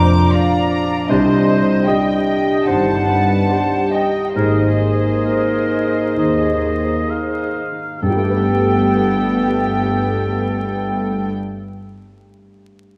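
Cinematic, emotional film score with an uplifting, hopeful mood, rubato and slowing through its first 8 seconds, where a dark, intimate solo violin and a floating, distant violin section carry the melody over sul tasto violas, a bright flute group and a second violin section, joined at 1.1 s by a roomy oboe and a very quiet clarinet, while a background grand piano, ringing fingerpicked harp, mellow French horn chords and pure-toned cellos and double basses with transformer saturation fill out the harmony, all bathed in scoring-stage reverb and worn, warbling cassette tape with vinyl crackle and drifting pitch.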